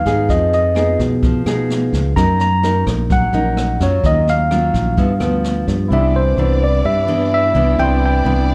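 Bossa nova at 128 BPM in Eb minor, intimate and wistful, where a bright, clean tine electric piano carries the melody up front over woody fingerpicked nylon-string guitar, a punchy fingered electric bass and a distant, roomy brush kit with a high-tuned snare until 5.7 seconds, before a background grand piano and smooth bowed strings with vibrato join at 5.9 seconds as the chords move from Fm7b5 through Ebm9 and G6 to Cmaj9, all set in a moderate hall reverb in this short cut from a longer piece.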